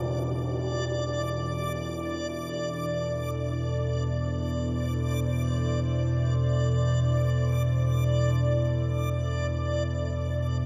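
Drenched in a huge, wet reverb, this desolate dark ambient excerpt sets an ominous, wave-folded rumbling drone up front beneath a moody, detuned sawtooth pad that holds sustained chords with chorus and fades out across the full 10.7 seconds, while a reversed, granular swelling texture adds a bright, dreamy glow high above.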